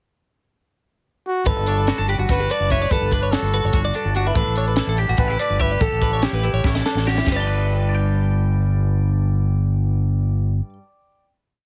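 A fast 7/8 pulse at 290 BPM in eighths drives this bright, intricate math rock and midwest emo piece in G lydian, where a close-miked trumpet with vibrato states hook phrases from 1.3 seconds over a twangy electric guitar's fingerstyle rolling arpeggios with warbly pitch drift, a clean twelve-string electric guitar ostinato through analog delay, a growling overdriven fingered bass riff, and a compact cocktail drum kit with a punchy kick, high-tuned snare and dark cymbals whose fill at 6.6 seconds leads into a held G chord at 7.3 seconds, captured in a dry, heavily compressed radio sound.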